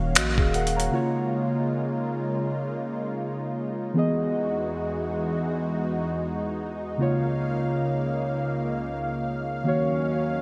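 Contemporary R&B at 79 BPM in Db major with a romantic, smooth swing: muted, warbling felt-like synth keys with chorus and a lush, nasal detuned pad with chorus and sidechain pumping carry chords from Ebm7 through Db6 and Emaj7 across the full 10.4 seconds, while a deep sine 808-style bass and a gritty, compressed sampler-style kit of finger snaps, hi-hat and thumpy kick with gated reverb play only until 0.9 seconds, all set in a hall reverb with bright 1980s-style digital production.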